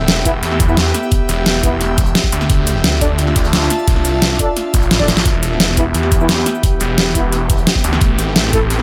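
A snarling, detuned saw bass growls up front over a very quiet, gritty breakbeat kit and a breathy, chorused pad that pumps in this aggressive, futuristic cut of dark technical drum and bass at 174 BPM in E phrygian, with an overdriven dubstep kit of deep snare, metallic hats and cabasa, a knocking electronic kick, and mellow, distant brass stabs carrying 12-bit sampler grit and tape echo arriving almost at once over Em and Dmadd9 harmony, before a drum fill at 5.0 seconds and a swarming, granular drone that enters in the background at 6.5 seconds.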